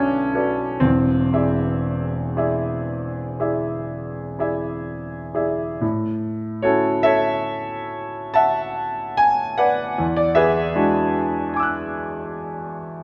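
A clear, up-front concert grand piano carries this serene, hazy passage of impressionist classical music alone, its open sound reaching from deep bass notes up into the high treble. The playing moves in a rubato 5/4 between roughly 58 and 82 BPM in A major, drifting through Bm7 and Eaug7 before settling on A6 at 5.8 seconds and E9 at 10.0 seconds. A moderate scoring-stage reverb surrounds the instrument in this short excerpt cut from a longer piece.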